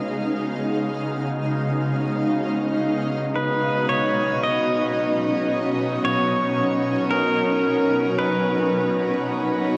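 A bright, shimmering pad of slow-attack chords with chorus and phaser and a tense, detuned string-like drone in the background open this serene, luminous ambient excerpt at 56 BPM in B lydian, shifting from C#9 to Badd9 at 2.8 seconds, before a clean, fingerpicked electric pedal steel guitar enters up front at 3.4 seconds with slide, volume swells and delay, the whole bathed in an 8.5-second shimmer reverb and the warbling pitch drift of worn cassette tape.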